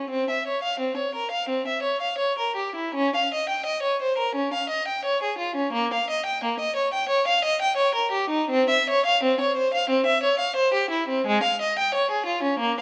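Solemn and grave, this excerpt from a baroque-style suite movement for unaccompanied violin unfolds at 87 BPM in 4/4 with a flexible, rubato feel, tuned to A4 = 442 Hz. A single bowed violin sits up front for the full 12.8 seconds, its rich, focused tone shaded with vibrato as it ranges from Ab3 to G5. A wet recital hall reverb with a 1.3-second decay surrounds the playing.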